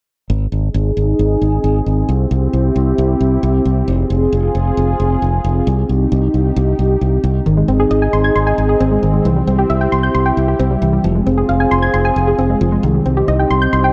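A steady, straight 4/4 pulse at 134 BPM drives this nocturnal, melancholic synth-pop excerpt in C minor, cut from a longer piece. From 0.3 seconds a sweeping, resonant pad holds sustained chords, its detuned sawtooth tone warbling under a lush chorus and a low-pass filter, with a filter sweep running until 7.5 seconds. A bright, punchy fingered electric bass sits up front alongside it, carrying the low end across the chord cycle of Ab, C, Fm and Cm. At 7.5 seconds a soft, round pluck joins with arpeggios that reach high into the register, its fast-attack, decaying notes given chorus and a slapback echo. The dark production is set in a moderate scoring-stage reverb, giving the parts a spacious, nighttime atmosphere.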